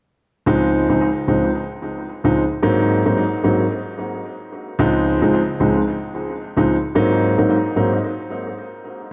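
This afrobeats fragment, cut from a longer piece, carries a romantic, breezy mood at 111 BPM in 4/4, with a 58% swing on the sixteenths giving it a relaxed lilt. A warm concert grand piano is the sole part, playing accompaniment from 0.5 to 8.0 seconds in Db major, its register reaching down to a deep bass and sitting up front in the mix. Its harmony rocks between Dbmaj7 and Ab7, returning to Dbmaj7 at 4.8 seconds before moving back to Ab7. Tape echo trails the piano's phrases, and a moderate echo chamber reverb with a 2.3-second decay adds a sense of space. The result is an echo-heavy mix where the repeats and the room's tail linger around the keys, lending the short passage a breezy, airy feel.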